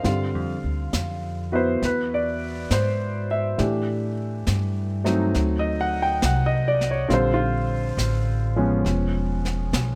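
A smoky, intimate jazz ballad fragment in swung 4/4, with an up-front concert grand piano whose natural tone carries deep bass and audible action noise, a dark, woody pizzicato upright bass also close in the mix, and a brushed drum kit of snare and hi-hat sitting further back, all heard throughout the 10 seconds in a dry, close sound.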